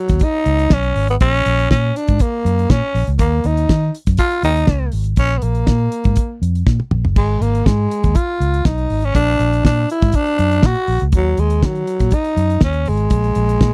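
A straight disco groove in 4/4 drives this short excerpt, carried by a damped 1970s drum kit with a tight kick, a fat snare, hi-hat, crash cymbal and toms, all sitting up front. A vintage fingered electric bass, dark, round and foam-muted, runs alongside from the first beat, its amped tone filling the low end. Over them a growling tenor saxophone plays the lead in a jazz-style solo, breathy and raspy with a soft attack and a gritty edge. The mood is sultry yet driving, moving through minor chords such as G#m7 and A#m before a stretch where the harmony drops out. A brief drum fill at 6.7 seconds marks the midpoint. The sound is dry and close, in the manner of a 1970s studio recording with little reverb.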